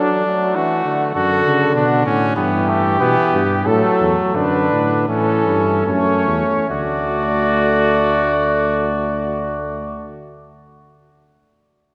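Stately and elegant, this brief cut from a longer imitative canzona for brass ensemble moves in a straight four, its pace easing over the opening 6.7 seconds before a new section begins. A mellow cornet carries the melody with light vibrato over a warm trumpet second line set up front, a clear, punchy trombone accompaniment, and a dark, smooth-topped bass trombone that enters at 1.2 seconds. A wet church reverb surrounds the ensemble, lending the harmonies a resonant, spacious glow.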